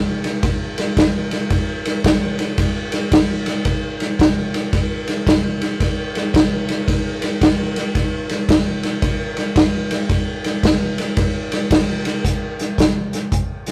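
Blues with a swaggering, laid-back swing, carried by a vintage acoustic drum kit playing hi-hat, kick, snare and ride from 0.2 to 13.7 seconds in this short cut from a longer piece. The kit sits up front with a boomy kick, a medium-tuned snare, dark cymbals and a rolled-off top, and its small room pumps around it. The rough rehearsal-room sound adds saturation and a moderate stone-room reverb, and a new section arrives at 12.2 seconds.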